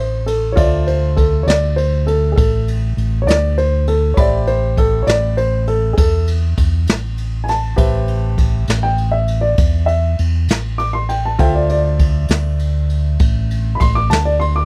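A dark, woody upright piano leads this brooding slow blues in A minor, taking a solo that runs the full 14.7 seconds over a clear, polished baby grand piano in the background and a round, amped fingered electric bass up front. The jazz brush kit comes in at 0.3 seconds, its boomy kick, medium-tuned snare and dusky ride cymbal played with brushes and placed close in the mix. The tempo sits at 66 BPM in a straight 12/8, giving the piece a smoky, unhurried pulse. The upright's mellow, short-sustained tone carries the line in the upper register, while the baby grand stays quieter and present behind it. The harmony moves between Am7 and Dm7, settling on Am7 from 4.2 seconds before returning to Dm7 at 11.4 seconds. The sound is dry and intimate, like a close 1970s studio session, and this fragment is cut from a longer performance.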